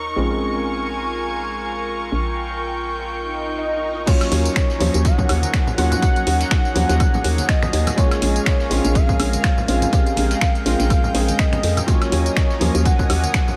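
Deep house at 123 BPM in Eb minor with a late-night mood, this excerpt opens on a felt-muted upright piano playing gritty, filtered stabs under a filter sweep, alongside an airy breathy pad, a hollow knocking FM bass, a dark chamber violin section in the background and a dusty sampler-style kit of hi-hat and fat snare, all moving between Bbm7 and Ebm7. An electronic swell in the background leads in a velvety synth lead with chorus and diffuse delay at 3.6 seconds. At the drop at 4.1 seconds a dry, punchy electronic kick arrives up front with an analog drum machine of crash, snaps, hi-hat, tambourine and woodblock, and low-tuned congas follow in the background, the pad, piano and bass pumping against the kick in light digital ambience.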